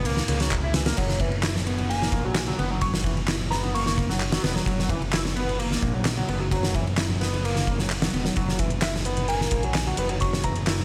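This gritty, raw breakbeat excerpt runs at 130 BPM in a straight 4/4, opening on an F#7 chord as a warbling, lo-fi tape-like pad holds sustained chords that are barely audible and gone after the first second. Up front, an oversized low-tuned acoustic kit drives the groove with a punchy kick, fat snare, dark crash and ride cymbals, and a saturated sound in a pumping stone room, while a layered electronic garage kit adds handclaps and bright hats. Distant congas sit very quietly in a large room behind them. A fat, detuned sawtooth bass with tube saturation and an evolving filter sweep moves between E1 and C#2 under a screaming, guitar-like overdriven synth lead, whose distorted riff between E3 and E4 is thickened with lush chorus, delay and vibrato. A glassy FM bell melody drifts in the background from 1.9 to 3.9 seconds and again from 9.3 seconds, its crystalline notes colored by tremolo, a telephone-like filter and 12-bit sampler grit. 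Vinyl crackle and a light small-room reverb lend the whole a worn, crackling surface.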